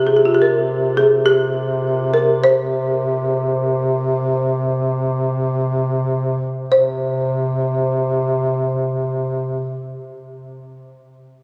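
This Caucasian folk lament, cut from a longer piece, drifts in a solemn, longing rubato 3/4 at roughly 36-54 BPM, tuned to A4 = 441 Hz, and slows down over its opening 6.7 seconds before a new section begins. A woody, rustic folk marimba played with medium mallets on hardwood bars carries the melody between F4 and C5. Up front, a mellow duduk holds a low C3 drone with soft attacks, vibrato and scooped notes. The whole recording is swallowed in a wet cathedral reverb with the loose, roomy feel of a phone capturing a club.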